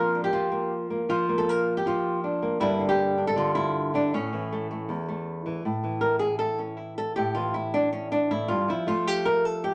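A lone fingerpicked flamenco guitar, acoustic and up front in a wet studio reverb, opens this mournful, intense fragment over Bb/F, Gm and A chords before moving into a nylon-string solo passage at 5.6 seconds that shifts from A5 to F at 8.7 seconds.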